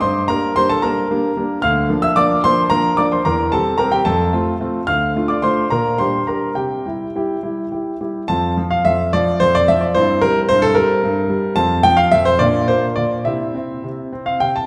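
A playful, cheerful classical-period piano sonatina in 6/8, played solo on a clear, intimate grand piano with audible action noise and a natural, up-front presence, spanning D2 to F6 with rubato. The playing sits in a wet recital hall heard from further back in the room, its reverb trailing each phrase. This fragment of a longer piece moves from an opening section into a second one at 8.3 seconds that passes through F, C7 and Bb harmonies before closing on a C chord.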